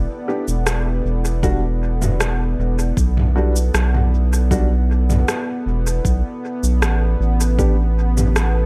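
A straight 4/4 pulse at 78 BPM sets an unhurried ambient dub groove in this short cut from a longer piece. An organic electronic drum kit enters at 0.5 seconds with rim clicks, shaker and toms that are overdriven, sent into dub echo and carry the air of a large room. A layered electronic kick joins at 1.4 seconds and sits in the background. Up front, a round analog bass holds the low end from the start, its sine-and-triangle tone sustained with a fast attack. Behind it, a warm analog pad sustains an E7(no3) chord with a slow attack, long release, detuned sawtooth body, sub octave and chorus, while a dark upright piano drops mellow, woody stabs with audible action noise and short sustain, each one trailing into dub echo. The mood is deep and spacious, with little reverb and an echo-heavy mix.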